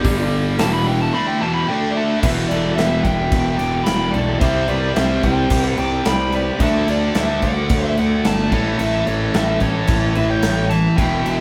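A dark, smooth lead guitar carries the melody in this heavy, driving hard rock excerpt, opening with a solo over the first 2.2 seconds through overdrive and digital delay. Beneath it, a cranked stack guitar with overdrive and a scooped, high-gain guitar with distortion both play picked riffs, while a growly fuzz bass, picked and overdriven, anchors the low end. A big acoustic rock kit pushes the straight 4/4 feel with a punchy kick, a medium-tuned snare, hi-hat and bright crash cymbals. From 2.0 seconds a nasal second lead guitar, overdriven with a parked wah, adds its own line in the background. A very quiet tonewheel organ holds clean sustained chords, colored by chorus vibrato, key click and a slow rotary speaker. The band sounds as if it is playing live together in a small room with moderate reverb, as the harmony moves from Em through C5 and D to A.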